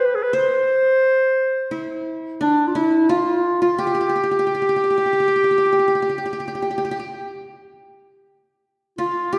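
Passionate and warm, this fragment of a Turkish makam ensemble piece places a classical-style solo clarinet up front on the melody, while a bright-edged qanun, played with fingerpicks on its triple strings, traces a quieter second line alongside it; both sound throughout in a lush hall reverb as the music moves into a new section at 7.9 seconds.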